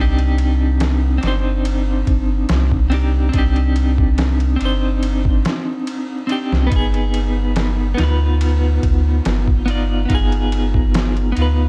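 A dark, dry production with vinyl crackle frames this short cut from a longer trip hop piece, its cinematic, melancholic mood unfolding at an unhurried, straight pulse in 4/4. A clean electric guitar carries the accompaniment from the start, its picked, scooped tone treated with tremolo and tape echo, sitting up front across the middle register. Beneath it, a soft dub sub bass holds the low end with a deep, round tone that blends triangle and square waves, its fast attack giving way to sustained notes. The sampler-style drum kit enters at 0.2 seconds, pitched down and gritty, with a thumpy kick, a medium-tuned snare and ride cymbal, compressed and re-recorded in a small room for a tape-warm character. The harmony rests on Cmadd9 before shifting to G7b9b13 at 6.7 seconds, leaving the passage suspended with tension.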